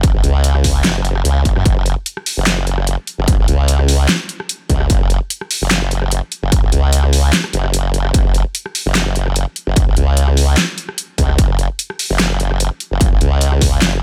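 From the first instant, a formant-filtered wobble bass surges up front alongside a distorted electronic kick and a layered dubstep kit, setting a menacing, aggressive tone in this heavy wobble dubstep excerpt cut from a longer piece. The bass blends sawtooth and sine tones through a formant filter, with a fast attack, sustained notes, heavy compression and an overdriven, chorused growl that sits low in the register. Alongside it, the kick is layered and distorted with a tape-warm character, while the kit brings a huge snare, bright hi-hats, handclaps and rim clicks, placed prominently in the mix. The groove moves in a half-time feel with a slight swing on the sixteenths, and a brief break arrives around 7.3 seconds before the full assault returns at 8.1 seconds. A digital ambience surrounds the parts, and the bass rings out last as the clip ends at 14.0 seconds.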